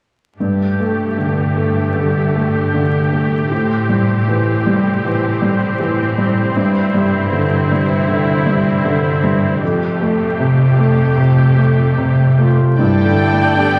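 A soft, intimate felt-muted upright piano sits up front in this tender, moving cinematic film cue, played with rubato over a distant, focused viola section and a cello section in the background, until a mellow duduk sings a folk-style melody with scooped notes at 12.4 seconds and, at 12.8 seconds, lush violin sections take up a very quiet high melody and an expressive second line while a concert harp rings out arpeggios, set in a wet scoring-stage reverb with vinyl crackle.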